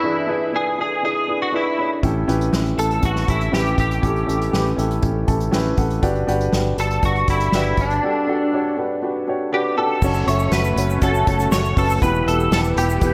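Steeped in plate reverb, this dreamy mix carries an uplifting, hopeful feel: a piano-driven pop excerpt at 120 BPM in a straight 4/4. A bright, twangy twelve-string electric guitar carries the melody up front, thickened by ensemble chorus, beside a mellow, woody upright piano that adds a short fill at 5.0 seconds. At 2.0 seconds a warm, direct fingered electric bass joins an acoustic drum kit played with bundle sticks in a small room, with a punchy kick, medium-tuned snare, hi-hat and dark crash cymbal. The harmony moves from E7 through A7 and Gmaj7 to F#m and Em. From 10.0 seconds a lush, detuned sawtooth pad with chorus and phaser settles into the background with a slow attack, while a grainy egg shaker adds soft texture behind it.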